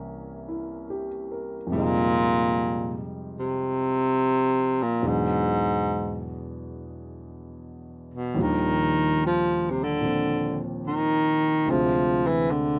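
Swung eighths at a slow 72 BPM in 4/4 carry this smoky, melancholic jazz ballad, cut from a longer piece. An intimate grand piano opens the accompaniment alone with its action noise audible, and at 1.7 seconds a baritone saxophone takes the solo melody in a soft-attack subtone with scooped notes and a roomy, jazz-styled tone. The sound is a dry, close 1970s-style studio recording with light reverb and both instruments up front, moving through rich harmonies from C7b9 to Dm9b5.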